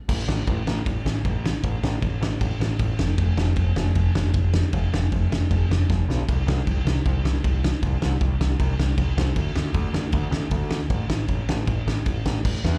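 Raw and aggressive, this punk rock excerpt drives along at 155 BPM in A minor, with a growling, overdriven picked electric bass sitting up front beside a loose, roomy indie drum kit of punchy kick, fat snare and dark crash cymbal. The drums break into a short fill at 5.9 seconds before the pair push on together to the end. It sounds like a live gig heard through the venue's PA, carrying a touch of club reverb.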